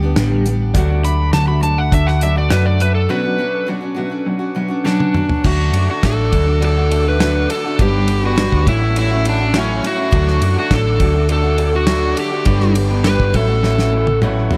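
An echo-heavy mix with light reverb frames this jangly, warm stretch of folk rock and heartland rock, cut from a longer piece. A bright picked steel-string acoustic guitar with finger squeak and a slightly broken-up, compressed electric guitar riff from a small old amp both carry analog delay, while a dark, round hollow-body short-scale bass sits up front and a dry, damped 70s drum kit with a tight kick, also touched by analog delay, adds fills at 4.9 and 13.6 seconds. An overdriven slide guitar, up front with its own analog delay, solos through the opening section up to 5.4 seconds before carrying the melody, and a very quiet, flute-like tonewheel organ holds sustained chords through a slow rotary speaker.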